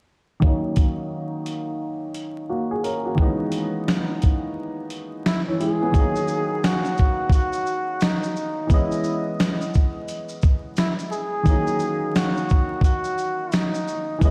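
A dreamy mix soaked in lush hall reverb and vinyl crackle frames this hazy, melancholic lo-fi hip hop piece, cut from a longer work and set at 87 BPM in 4/4 with a swung sixteenth feel in Eb phrygian. From 0.4 seconds, an upright piano with a woody, slightly detuned tone and a cassette-tape, low-pass coloring alternates between Ebm7 and Dbm7, with a filter sweep across its opening passage up to 5.9 seconds. Alongside it, a gritty, compressed sampler-style drum kit sits up front and loudest, with a thumpy kick, fat snare, hi-hat, finger snaps and shaker re-recorded in a large room. At 5.3 seconds, a breathy flugelhorn takes a jazz-style solo between Eb4 and Ab4, its scooped notes and light vibrato softened by a low-pass filter and trailed by analog delay.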